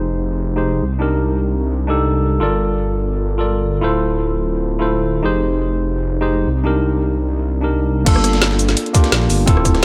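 A straight 4/4 pulse at 170 BPM drives this lush, melancholic liquid drum and bass cut in G minor, taken from a longer piece. For the first 8.1 seconds a worn, slightly out-of-tune tine electric piano, lightly overdriven through a combo amp and treated with dub echo, sits up front, moving through minor seventh chords from Fm7 to Cm7, Gm7 and Dm7. Beneath it a menacing, evolving detuned saw bass, built from sawtooth and sine in unison, holds sustained low notes with a fast attack and a filter swell. At 8.1 seconds the drop lands on Gm7 and the drums arrive: a tight electronic kick up front, a layered kit with a woody snare, metallic hats, cabasa, crash and rim click under low-pass filtering, and a gritty, pitched-up breakbeat kit with a high-tuned snare, filtered and set back in a large room. The piece runs with light reverb and a low-pass filter until it is cut at 9.8 seconds.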